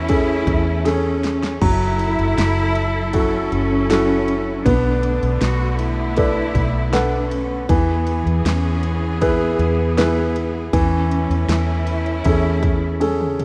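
Pop ballad at 79 BPM, emotional and melancholic, in a short cut from a longer piece, where an intimate, up-front grand piano with audible action noise carries the accompaniment over a dark, foam-muted fingered electric bass, a pop drum kit with a punchy kick and a fat snare that enters at 0.1 seconds and fills at 0.9 and 13.0 seconds, a rich, close cello section singing a second line with vibrato, and a smooth-topped string section holding sustained chords in the background through Amaj7/E, F#m7, Bm7 and E, all in a rough home demo mix with light reverb and studio ambience.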